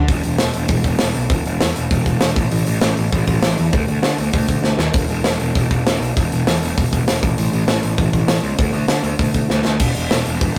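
A growly, fuzz-drenched picked electric bass drives this rebellious, upbeat punk rock excerpt at 198 BPM in a straight 4/4, joined from 0.1 seconds by a big, up-front acoustic rock kit with bright cymbals, a punchy kick and a medium-tuned snare, the kit throwing in fills at 4.6 and 9.5 seconds, all caught in a rough rehearsal-room sound with light reverb.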